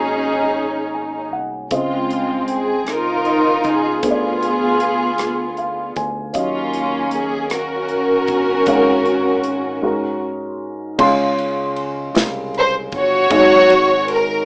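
Slow gospel in 6/8 at 52 BPM in Db major, hopeful and reverent, where an up-front bowed string section carries the melody with soft-attack sul tasto vibrato over a dark, mellow baby grand piano that adds fills at 0.6 and 5.2 seconds, a bright, growly fingered electric bass sitting in the background, and an airy acoustic drum kit with a tight kick and rim clicks entering at 1.7 seconds, all moving through chords from Ab9sus4 and Dbmaj9 to Ebm9 before a break at 9.8 seconds and a closing turn to Dbmaj7 and Ab7sus4, in a rough home-demo mix with a small-speaker sound.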